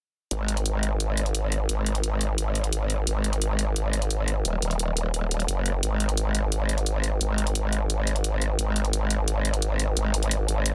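Dark technical drum and bass with an aggressive, futuristic mood, this short excerpt runs from 0.3 to 10.7 seconds with a growling, saturated bass wobbling through a formant filter and chorus up front, over bright, overdriven electronic hi-hats that sound re-recorded in a small room, all inside a dense, heavily limited modern master with little reverb.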